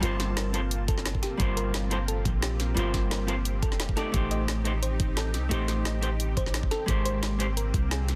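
Over a lightly swung 175 BPM drum and bass groove in G minor, with bright hats, a woody snare and a knocking overdriven kick that enters at 0.9 seconds, this melancholic liquid drum and bass excerpt layers a deep, up-front 808-style sine bass, dark clean hollow-body jazz guitar with digital delay, a thick detuned unison pad pumping under sidechain with chorus and phaser, and tine-like FM pluck arpeggios with tape echo in the background, moving through Gm11, Am7b5 and Abmaj9 in a dry, dense, heavily limited mix.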